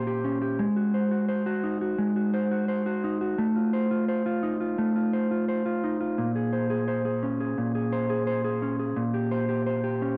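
A mellow electric guitar opens this short dream pop excerpt on its own, playing clean and fingered with a dark tone and a subtle chorus, sitting up front in the mix. The mood is hazy and ethereal, moving at a straight 86 BPM in 4/4 in Bb minor, with the guitar ranging from Bb2 to C5. The harmony drifts from Bbm69 through Ab7 and F7/A, reaching Bbm9 at 6.2 seconds before settling back on Bbm69 at 9.0 seconds. A moderate plate reverb with a 3.4-second tail gives the solo guitar a dreamy halo, while the hardware recording lends it a gritty edge. The passage lasts 10.2 seconds and is cut from a longer piece.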